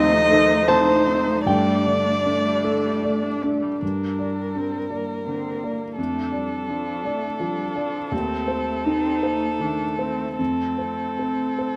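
Melancholic and full of longing, this neoclassical piece for piano and strings moves in a rubato 3/4 at roughly 74-86 BPM in G minor, tuned to A4 = 436 Hz, and is cut from a longer work. A single con sordino violin carries the melody up front, its veiled tone shaded with vibrato and portamento. A dark baby grand piano sits equally close as accompaniment, mellow and intimate, with audible action noise, a boxy character and short sustain. Further back, a nasal muted cello supplies a second line while a solo viola adds soft-attacked accompaniment. A veiled, muted chamber string section holds sustained chords only until 3.8 seconds, when the passage shifts from Adim/Eb and Gsus2 into a section built around Gm, Dm/F and a closing F. Plate reverb on every part and a modest small-room ambience frame the rough home-demo mix.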